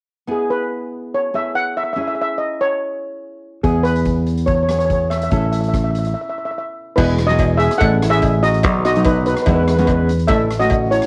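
Opening at 0.3 s, a mellow, shimmering double-seconds steel pan played with soft rubber sticks carries the sunny melody up front through plate reverb and cassette-tape colour over a full-bodied, fingerpicked nylon-string guitar, until a growly, punchy fingered electric bass and a big-room, cassette-tinged street-band drum kit with dark crash cymbal, hi-hat, boomy kick and rim click arrive at 3.6 s to drive this festive 144 BPM calypso in E major, with a compressed, saturated cowbell joining in the background from 7.0 s.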